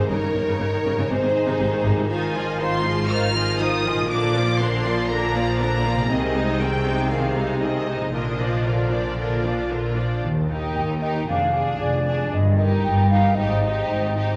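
Pulsing in 4/4 at 118 BPM with uneven beats, this fast, dramatic romantic orchestral passage in Eb major is cut from a longer piece and feels cheerful and lively. Warm first violins with vibrato carry the melody over a rich second violin line, clear violas, a very quiet ringing harp playing arpeggios, rich bowed cellos in the background, and lush, distant bowed double basses, while a mellow French horn section sustains chords until 9.9 seconds. At 10.8 seconds a pure, hollow, close-miked concert flute adds a tongued second line as the harmony moves from Eb toward Abmaj7, all set in a moderate stage reverb with studio ambience.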